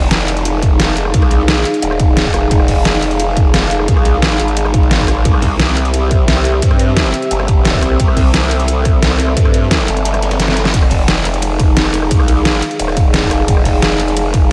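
This is an aggressive, tense piece of dark technical drum and bass at 175 BPM in a straight 4/4, cut from a longer track. It opens on a moody, full-bodied analog pad of detuned sawtooth and triangle tones with a sub octave and slow attack, holding sustained chords with chorus and sidechain pumping, alongside a growling, wobbling bass that sits up front, bright and saturated through a formant filter, overdrive and chorus. A prominent dubstep kit with a deep snare, rim clicks, hi-hat and ride enters at 0.1 seconds, and a punchy, layered electronic kick joins at 0.6 seconds, both re-recorded in a large room. Underneath, a very quiet breakbeat kit adds gritty, rolled-off texture with a high-tuned snare and dark cymbals. The harmony moves from Fm7 to C and back. The kick drops out at 10.1 seconds while a drum fill leads to its return at 10.7 seconds, all under a light studio reverb.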